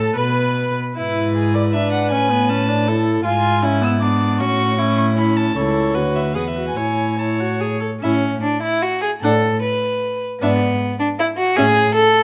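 Cheerful and lively, this quick classical-period movement for string quartet moves in a lilting three-beat metre with a flexible, rubato feel. The first violin carries the melody high above the group with a nasal, reedy gut-string tone and light vibrato, heard close to the ear. The second violin plays a second line beneath it, sitting up front with its own rich, bowed sound. The viola fills in the accompaniment with a smooth-topped period tone, while the dark cello supplies the bass, also placed up front. Harmonies circle around the home chord with passing diminished and dominant colours. The close, detailed microphones catch each player in a moderate recital-hall ambience, and the passage ends at 12.2 s as a fragment lifted from a longer piece.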